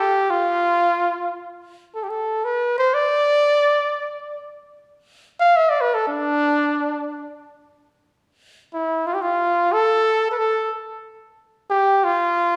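In free time, a lone flugelhorn sings a longing, melancholic Turkish melody in D makam huseyni, tuned to A4 = 439 Hz, moving between D4 and F5 across this 12.6-second fragment of a longer piece, with a new section beginning at 7.7 seconds. Its warm, close-miked tone sits up front and carries vibrato and scooped notes with a pop-style phrasing, while a recital-hall reverb with a 1.4-second tail lends the sound of a church or concert hall.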